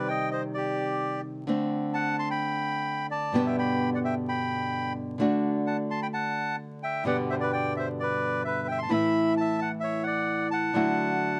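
A reedy, dark bandoneon carries the melody up front in this melancholic, sultry tango fragment, its smooth line moving with a rubato feel over a close, fingerpicked nylon-string guitar that sounds small and acoustic. Both parts play throughout the 11.4 seconds, with the chords drifting from Cm through D7(no3) and G to a closing Dadd9. The dry, intimate recording is tinged with vinyl crackle, lending the brief excerpt a worn, nostalgic air.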